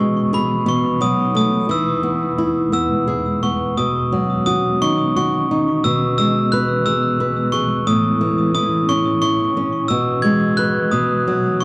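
A sparkling glockenspiel struck with brass mallets carries the melody from the first moment, its bell-like tones trailed by tape echo. Beneath it, a fingerpicked flamenco guitar with fresh strings and a blurred, evolving granular pad lend this tender children's lullaby a gently rubato 6/8 sway. Heard as a portion of a longer piece in an intimate, dry 1970s-style room, it moves into a second section at 3.8 seconds, resting on sustained chords that close on an unresolved B.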